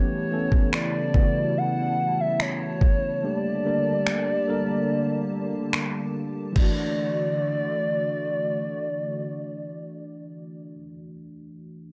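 A hollow, woody synth lead carries the melody up front, its soft clarinet-like tone shaded with vibrato, chorus and delay. This romantic, dreamy contemporary R&B excerpt moves in a straight 4/4, with a clean, direct tine electric piano supplying accompaniment through an analog chorus. Beneath them, a mellow, flute-like pad holds sustained chords with a slow attack and long release, thickened by ensemble chorus. A detuned 8-bit drum machine with a thumpy kick, finger snaps and crash cymbal enters at 0.5 seconds, sounding tape-warm and re-recorded in a large room, then drops out at 6.8 seconds as the harmony settles from A7 and Gmadd9 onto D. The electric piano lingers alone until 11.9 seconds, all within dark, digital ambience.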